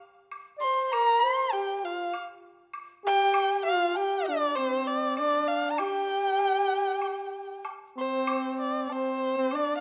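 Graceful and wistful, this short fragment of Chinese traditional chamber music opens with a quieter acoustic woodblock at 0.3 s. From 0.6 s, a dark, nasal, boxy erhu up front carries the melody with vibrato and expressive portamento, alongside a punchy, smooth-topped flugelhorn second line with light vibrato. All of it is captured with close, detailed microphones and light reverb before the music moves into a new section at 8.3 s.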